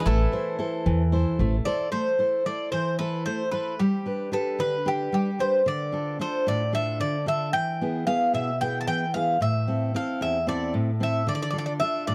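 In a straight 7/8 lilt, this cool, brooding Greek folk fragment puts a mellow, metallic bouzouki melody up front over a full-bodied, fingerpicked steel-string dreadnought guitar, while a bright second bouzouki line and a woody, thumpy gut-string upright bass, played pizzicato, sound only until 1.6 s, captured close and detailed with light reverb as the chords move from Am through G, Dm and E and back to Am before reaching Dm.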